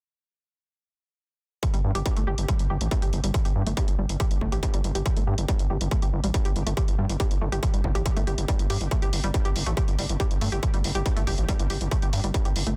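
Driving peak-time techno at 140 BPM in a straight 4/4, this dark, intense excerpt kicks in at 1.6 seconds with a distorted, layered electronic kick sitting up front and warm electronic hi-hats, both carrying the air of a large room. A gritty, nasal synth bass built on sawtooth and oscillator sync pumps against the kick from G1 to G2, saturated and aggressive, while a round, detuned analog pluck riff with a noise layer and filter sweep moves between G3 and G4 through chorus, tape echo and the same sidechain pumping. The dense, heavily limited modern master keeps reverb to a minimum, leaving the mix dry until the hats stop at 12.8 seconds.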